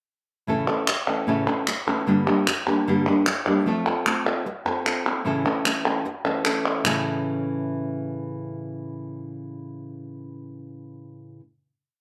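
A light reverb surrounds this short, complete flamenco piece in A phrygian dominant, passionate and intense at a straight 150 BPM in 4/4. A deep, classical-toned nylon-string guitar carries the accompaniment up front, fingerpicked and mixed with rasgueado strumming and taps on the top, while crisp palmas hand claps mark the cycle through the A, Gm, F and back to A progression. The claps stop at 6.9 seconds, leaving the guitar to ring out on a final chord until 10.1 seconds.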